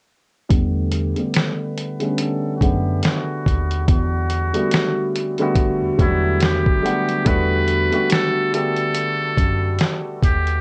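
From 0.5 seconds, a swung lo-fi hip hop groove at 71 BPM in E minor opens on an Em11 chord: a muffled, thumpy sampler-style drum kit with 12-bit grit sits up front; a dark, woody upright piano with long sustain plays accompaniment; a worn, slightly out-of-tune tine electric piano carries the bass; and a breathy, buzzy muted trumpet whispers an intimate jazz-style melody, the trumpet and upright piano both low-pass filtered, under a filter sweep that runs until a new section arrives at 7.3 seconds, all set in light reverb and cassette-tape colour for a nostalgic, melancholic mood in this cut from a longer piece.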